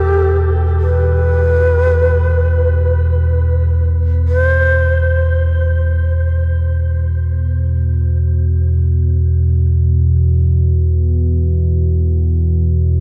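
A breathy, end-blown bamboo shakuhachi enters at the very start of this dark, ominous ambient drone piece, carrying a short melody between G4 and C5 with gentle vibrato and a soft attack before falling silent at 5.4 seconds. Shimmer reverb and a diffuse ambient delay trail its tone. Beneath it, sounding from the first moment, a deep, rumbling synth drone built from triangle and sawtooth waves sits up front in the range of E2 to B2. It swells in with a slow attack, sustains with a long release through its own reverb, and carries a filter sweep across the full 13 seconds, opening on an E5 chord. The music moves in free time and is set in a moderate amount of huge ambient reverb with an 8.4-second tail. Worn cassette tape adds a warbling pitch drift to the recording, which is cut from a longer piece.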